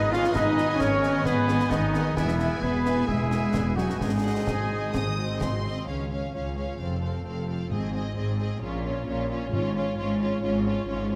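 A straight 4/4 pulse at 131 BPM drives this soaring, adventurous heroic film-score passage, where a violin section with smooth vibrato carries the melody over a distant second violin line, a pure flute section, a mellow clarinet, a warm oboe, lush viola and cello sections, a focused double bass section, dark sustained French horn chords, ringing harp arpeggios, bright trumpet stabs and concert snare and bass drum, until the winds, brass and drums drop out around 5.6 s as the music moves into Db major and close, dry timpani enter at 7.7 s within a moderate scoring-stage reverb.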